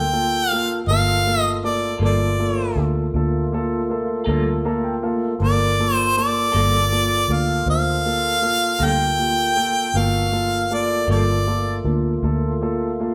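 A slow, brooding minor blues opens with harmonica, grand piano, tonewheel organ and electric bass sounding together in a straight 12/8 feel, cut from a longer piece. The bright, close-miked harmonica carries the mournful melody up front, its soft-attacked, scooped notes shaded with light vibrato in a jazz-inflected solo voice. The dark, mellow grand piano accompanies with long sustain and steps forward with a fill at 4.3 seconds. Beneath it, the fat, lightly overdriven organ holds sustained chords in the background through a slow rotary speaker and chorus vibrato, with audible key click, while the foam-muted fingered bass gives a round, amped low end. A clean, picked semi-hollow guitar with tremolo joins quietly in the background at 2.0 seconds. The harmonica drops out at 11.9 seconds, and the band, playing live in one room, sits in a wet, large studio reverb.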